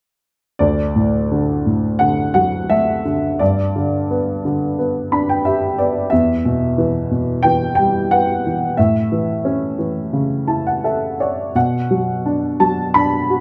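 Relaxed and hopeful, this is a short classical excerpt for solo piano, cut from a longer piece, moving at 88 BPM in 4/4 with a loose, rubato feel and uneven beats in D major. A worn, woody upright piano carries everything alone from 0.6 to 13.4 seconds, its slightly detuned tone sitting up front and natural, spanning D2 to B5. The harmony drifts gently from Dadd9 through G, Em and A before settling on Bm7 at 11.6 seconds. Brief piano fills ornament the line at 4.8 and again at 10.1 seconds. Close, detailed microphones capture the instrument's character, framed by light reverb.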